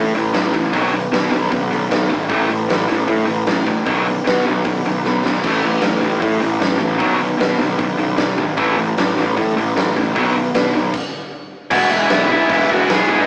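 A growly, fuzz-soaked electric bass sits up front in this rowdy, rebellious punk rock excerpt, driving a straight 4/4 at 153 BPM in B mixolydian. Two picked electric guitars carry the riff: a tight, bright distorted part in the background and a cranked, overdriven stack guitar so faint it barely registers, both cycling between A5 and B chords. A big acoustic rock kit with a punchy kick, medium-tuned snare, hi-hat and crash rings in a stone room and stays close, throwing in a quick fill at 5.0 seconds before the band hits a stop at 10.9 seconds. At 11.7 seconds the harmony lands on E and a dark, bluesy distorted lead guitar bursts in with a short melody for the closing moments. The whole thing has the rough, saturated feel of a rehearsal-room take heard through a small speaker, touched with light reverb.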